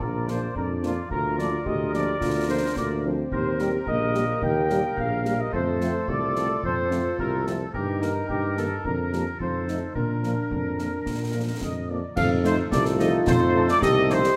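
A dark, vintage-toned trumpet section sits up front and carries the melody of this festive, spirited military-style march for wind band in a straight two-beat metre, a short passage taken from a longer piece. Beneath it, a mellow woodwind section with a smooth top and soft attack plays a second line, joined by a warm euphonium with light vibrato sitting in the background. A tuba, also up front yet distant and roomy in tone, anchors the bass, while concert bass drum, concert snare drum and clash cymbals with dark cymbals keep the march going from a small-room acoustic. A French horn section adds mellow, gently vibrato-tinged accompaniment in the background from 0.3 seconds. At 12.2 seconds a very quiet trombone section enters with sustained chords as a new section begins, all framed by a moderate concert hall reverb.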